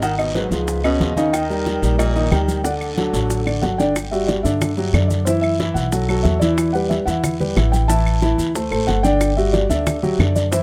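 A concert grand piano with deep bass and audible action noise sits up front, comping under a soft, boxy felt-muted upright piano melody in this lively, sophisticated excerpt of Afro-Cuban jazz at 183 BPM, with the harmony settling into G major from 4.0 s. A breathy, whispered baritone saxophone adds an intimate second line with vibrato until 3.6 s, while a growly, thumpy pizzicato upright bass drives from the front. Damped congas and round, low-tuned bongos sit in the background with woody claves, joined by raspy guiro and grainy maracas, all in a small room with the rough feel of a home demo.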